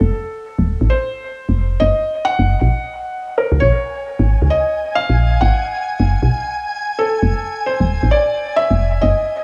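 Melancholic and cerebral, this short IDM fragment moves at 133 BPM in 4/4, with a light swing on the sixteenths and a tuning pitched at A4 = 441 Hz. A felt-muted upright piano carries the melody from the start, its soft, mellow, intimate tone sitting up front with short sustain and trailing dub echo. Underneath, a woody FM bass holds the low end, round and dark with a fast attack that then decays, placed prominently in the mix until 9.1 seconds. At 3.9 seconds a flickering, grainy granular texture enters high above, a detuned triangle-like tone with a slow attack and long release, bathed in its own reverb and kept faint. The harmony drifts from F6 through Ebm/Gb, Bbm7 and Ab7 with its third omitted before settling back on F6, all within an echo-heavy mix with a small-room studio ambience.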